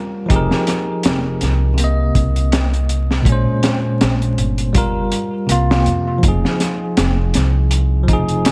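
Bright, 1980s-style digital production with a layer of vinyl crackle, light reverb and a touch of studio ambience gives this short, melancholic trip hop fragment a smoky haze. A bell-like tine electric piano opens alone at 0.0 s, clean, direct and up front, its chords shimmering through tremolo and tape echo. At 0.3 s a woody, pizzicato upright bass with a bright steel-string edge joins in the low register, alongside a crunchy breakbeat kit. The drums are saturated, gritty and dark, with a tight kick, a high-tuned snare, hi-hat, a rolled-off top and gated reverb, sitting up front in a lightly swung groove. The harmony drifts through minor-seventh, ninth and eleventh chords and a suspended dominant before a new section arrives at 6.2 s on Fm7, and the fragment is cut from a longer piece.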